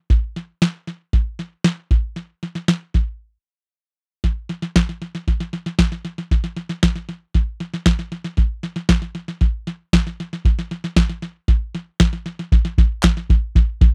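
A straight 4/4 pulse at 116 BPM comes from a soft vintage rhythm box, its deep kick and crisp snare overdriven and up front, giving this folk fragment a bittersweet, yearning mood. After a short break, the machine carries a long build-up and drum fill from 4.2 seconds to the end, and a hollow group handclap appears briefly at 13.0 seconds. The sound is dry and close, like a 1970s studio recording.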